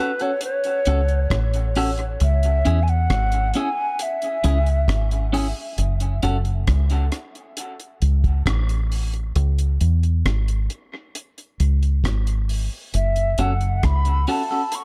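Heavy and hypnotic, this dub reggae excerpt moves at an unhurried 67 BPM in straight 4/4, sitting in F# minor and rocking between F#m and C#m chords. A mellow, hollow jazz flute carries the melody with an airy tone, vibrato and a chiff on its crisp attacks, playing from the start until 5.3 seconds and returning near the end, its notes trailing off in dub echo. A clean, twangy electric guitar supplies picked, compressed accompaniment in the middle register, also soaked in dub echo and returning briefly before the close. The deep reggae drum kit keeps hi-hat, rim click and a tight kick dry, dark and smooth with a rolled-off top, though echo trails its hits as well. Loudest of all, the round, punchy fingered bass enters at 0.9 seconds and sits up front with a dark, foam-muted sound, anchoring an echo-heavy mix set in a small room with light reverb.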